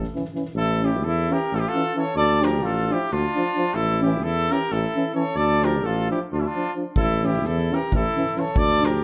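A warm, distant cornet melody opens this restless, virtuosic Balkan brass band excerpt in 7/8 at 262 BPM (eighths), over a mellow trumpet second line and a punchy, lightly vibrato tuba bass, as a soft-mallet drum kit with a fat snare and punchy kick sounds briefly at the start and returns at 7.0 s, while a dark euphonium and a vintage-toned second euphonium sit in the background, all in A phrygian dominant moving between A and D minor within a moderate recital hall reverb.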